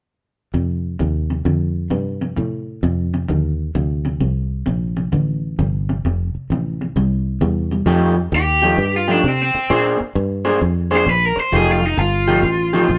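A swung shuffle at 131 BPM in 4/4 sets a swaggering, laid-back electric blues groove in F mixolydian, in a short section cut from a longer piece. An electric guitar through a small old amp plays a picked, slightly broken-up riff, while a fingered electric bass with a round, punchy, foam-muted tone holds the low end, both sitting up front. The harmony moves from F7 to C before shifting at 7.9 seconds into a passage built on F9 and Bb9. At 8.4 seconds a raw garage guitar enters with an overdriven, lo-fi solo melody that stands out as the loudest voice. The band sounds like it is playing live in one room, with a light touch of reverb around it.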